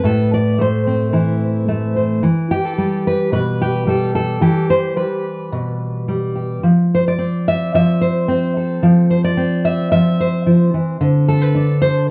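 A dark, lightly reverberant production frames this melancholic, haunting fragment of solo folk fingerstyle, cut from a longer piece, where a full-bodied jumbo steel-string acoustic guitar sits up front with audible finger squeak, tuned to A4 = 435 Hz and moving through Am, Em and Fmaj7 before landing on a D5 at 11.0 seconds.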